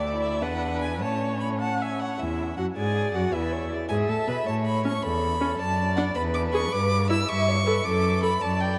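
A rich, close first violin with smooth vibrato carries the melody up front in this spirited, cheerful excerpt from a quick classical-period string quartet movement in 6/8 at 106 BPM, joined by a dark, softly attacked second violin, an expressive viola that slides between notes, and a full-bodied cello holding the bass just as prominently, all set in a vast, echoing cathedral reverb.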